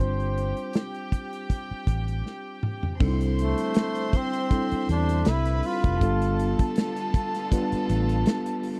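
Smooth and warm, this short cut from a lush 1970s-style soul track sits at 80 BPM with a gentle sixteenth-note swing in C major, led by an up-front, mellow flugelhorn melody full of vibrato and scooped notes. A reedy studio string section with tape echo traces a second line over tine electric piano coloured by tube saturation, while a round, foam-muted fingered bass and a dark, tight drum kit hold the groove, the kit playing a fill from 2.3 to 3.0 seconds. At 3.0 seconds a clear symphonic string section enters in the background with focused sustained chords, and the dry, close studio sound keeps the whole track intimate.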